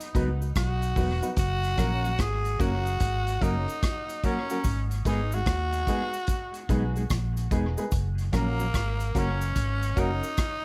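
A raspy, gritty tenor saxophone carries the melody with vibrato and dub echo over a vintage drum kit of tight kick, hi-hat and rim click, while a cabasa sits distant in the background of this laid-back, sunny roots reggae excerpt at 73 BPM with a swung 16th feel. Just after, a mellow, clean electric guitar with subtle chorus and dub echo, a worn, woody and slightly detuned upright piano playing stabs, and a dark, round, foam-muted fingered bass up front join in, moving through B, F#, G#m and F#. Light reverb gives the recording a gentle glow.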